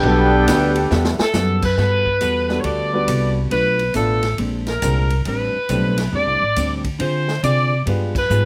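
An energetic big band swing excerpt in G major at 138 BPM opens with a trumpet section carrying the melody with slapback echo over a mellow trombone second line, while a distant, roomy trombone section holds brief chords above a rhythm bed of clean, compressed hollow-body electric guitar, grand piano and woody pizzicato upright bass. The swinging drum kit joins with a punchy kick, ride, hi-hat, snare and crash, playing a short fill, and at 1.2 s a bright, tight saxophone section with vibrato and slapback echo takes over the melody, sitting up front. The harmony moves from Gmaj9 through Bm7b5, Bb9 and Am11 toward a band accent at 8.1 s over G7b9, and the sound is dry.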